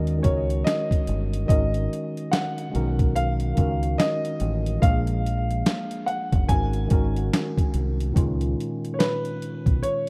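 A gritty, pitched-down boom bap drum kit sits up front with a thumpy kick and a medium-tuned snare, setting a reflective, nostalgic lo-fi hip hop groove at 72 BPM in a swung 4/4 and G# dorian. A dark, round fingered electric bass holds the low end, while a worn, slightly out-of-tune tine electric piano with a cassette-tape colour plays chords such as D#m7 and Bmaj7. A woody upright piano carries the melody through tape echo from 0.2 seconds, and the harmony shifts to C#13 at 8.2 seconds, all in a rough home-demo mix with light reverb in this excerpt.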